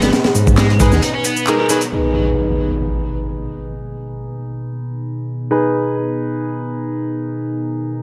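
Set in a small, lightly reverberant room, this swaggering, funky breakbeat excerpt in G# minor moves at 134 BPM, opening with a crunchy, punchy drum kit with a high-tuned snare, layered electronic shaker and handclaps, a fat, detuned sawtooth bass, and a bright, double-tracked high-gain guitar riff with tube saturation and digital delay. A deep, moody ambient pad with chorus, sampler grit and sidechain pumping sustains its chords throughout, while a clear baby grand piano plays gritty, filtered stabs from 0.8 seconds and the band hits an accent during the break. At 1.9 seconds the drums drop out and an up-front electronic impact rings over the pad and piano.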